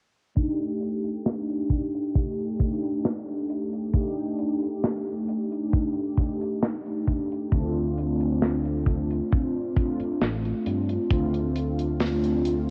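A mellow, detuned synth brass colours this woozy, hazy vaporwave excerpt at 67 BPM, its brassy, full-bodied sawtooth tone thickened by analog chorus, vibrato, cassette tape and analog delay as it sustains chords from Ebmaj7#11/A to Dm7. Beneath it, a tight, up-front kick and a kit of hi-hat and medium-tuned snare with a rolled-off top keep a straight 4/4 from 0.4 seconds, while a dark, round fingered electric bass enters at 7.5 seconds. The whole sounds like a home cassette recording in a light reverb, with a low-pass filter sweep running through it.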